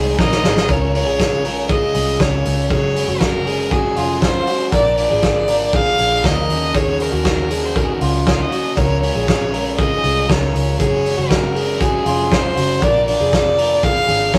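A warm, expressive violin carries the melody up front in this jangly indie pop excerpt, its soft attack, vibrato and portamento giving the tune a nostalgic, youthful glow. Beneath it, a bright, twangy electric guitar through a small old amp picks arpeggios with a slightly broken-up edge and a digital delay, while a crunchy overdriven guitar fills in the accompaniment. A vintage muted picked bass adds a dark, round, foam-muted low end. The loose indie drum kit opens with a fill at 0.2 seconds and then drives a straight 4/4 groove of hi-hat, punchy kick and fat snare, its gritty, saturated tone sitting up front with a rolled-off top. The chords move from Db through Gbsus2, Bb and Ebm7, and the whole thing has the rough, lived-in sound of a rehearsal room softened by moderate reverb.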